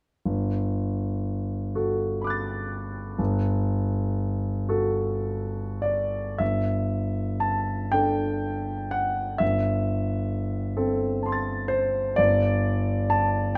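Dreamy and serene, this impressionist classical passage for solo concert grand piano drifts in a rubato 6/8 at roughly 33-44 BPM in G major, lifted from a longer piece. The piano spans G1 to A6, its deep bass and polished, up-front tone captured by close, detailed microphones in a light reverb. Its chords move from Gmaj9 through Dadd11/G, with a second section from 6.4 seconds passing over Gsus2 and Am7/G to settle on G5 at 12.2 seconds.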